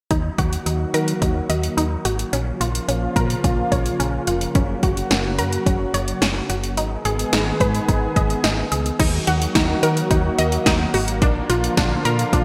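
A nocturnal, driving synth-pop excerpt at 108 BPM in straight 4/4, set in Eb minor and shifting to Eb harmonic minor at 9.0 s, where the chords move from Ebm to a closing Bb. A lush, thick unison pad of detuned sawtooth voices holds sustained chords with a slow attack, long release and chorus, its vintage warble spreading beneath everything. Over it, a bright unison pluck plays arpeggios with a snappy filter envelope and a noise layer, trailed by digital delay. A solid FM bass, round, dark and decaying, anchors the low end, while a deep house drum kit sits up front with a deep kick, punchy snare, metallic hats and crash, overdriven and re-recorded in a large room with gated reverb. All four parts play throughout, framed by a lush hall reverb and a bright 1980s-style digital production.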